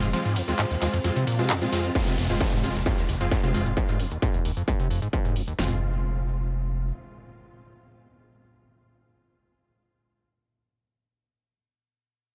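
A lightly reverberant mix frames this fragment of driving peak-time techno in F minor at 132 BPM: intense and relentless, in a straight 4/4, resting on an F minor chord. From the opening drop, a squelchy, gritty square-wave acid bass riff with sidechain pumping and delay sits beside a deep, saturated sine sub bass held on F1 and placed up front. Aggressive, detuned sawtooth rave stabs, bright with chorus and built-in reverb, continue through to the close at 10.3 s. A metallic, eerie FM drone sounds very quietly beneath the opening, while an electronic kit supplies handclaps, ride cymbal and metallic hats that pump with the sidechain, joined faintly by an acoustic arena kit of hi-hat and medium-tuned snare heard in a hall. At 2.0 s a second electronic kit arrives prominently with a distorted kick, cracking snare and toms, as a downlifter and impact sit in the background; the sub bass is the last of the low end to stop, at 6.9 s, leaving the stabs and effects to carry the tail.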